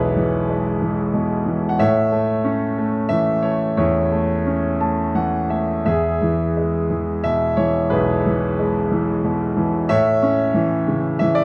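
Classical solo piano in A major, sunny and hopeful, moving in a lyrical, rubato 3/4 at 90 BPM, where a bright concert grand sits up front with brilliant, open tone, deep bass and long sustain across a range from B1 to A5, adding a fill from 4.5 to 5.8 seconds as the harmony shifts between E and A, all set in light reverb within a dark, warm production in this short passage cut from a longer piece.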